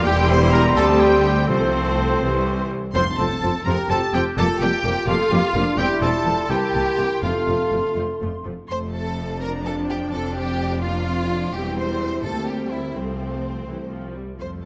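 This lively, spirited classical-period orchestral movement in a lilting compound metre is cut from a longer piece. A focused, distant violin section carries the high melody with vibrato, while a second, expressive violin section plays a close inner line beneath it. Woodwinds add more lines in the first half: an airy flute section in the background, a smooth-topped oboe, a very quiet clarinet, and a dark, roomy bassoon in the accompaniment, all finishing by 8.5 s. Under them, a lush viola section fills the accompaniment, a bright, intense cello section and a smooth, even double bass section anchor the bass, and a mellow, tight French horn section holds sustained chords nearly throughout. Very quiet timpani with hard mallets enter at 1.5 s for short articulate touches. The second section leaves the strings and horns to continue alone over chords centred on F and C, all framed by a moderate scoring-stage reverb.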